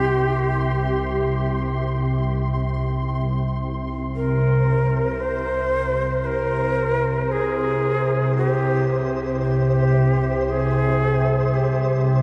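Dark ambient drone in free time and C minor, this cavernous, unsettling excerpt sets a breathy, end-blown shakuhachi melody with vibrato and chiff up front, bathed in shimmer reverb and delay, over a nasal, detuned organ-like drone with ensemble chorus, a flickering grainy texture high above, and a very quiet, cloudy granular pad that sustains only from 0.6 to 4.2 seconds, as the harmony moves from C minor to a bare C fifth at 4.2 seconds inside an enormous, wet reverb.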